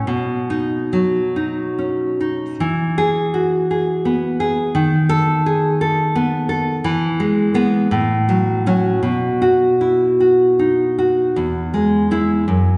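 Warm and nostalgic, this brief excerpt from a longer romantic piece for solo classical guitar moves in a lilting 6/8 with free, rubato timing. The nylon-string guitar is fingerpicked up front with a deep, acoustic tone, finger squeaks audible and a slapback echo trailing its notes, spanning from low bass up into its middle register as the harmony settles on E major by 11.4 seconds. A wet concert hall reverb surrounds it, heard from further back in the room with a soft, dulled top end.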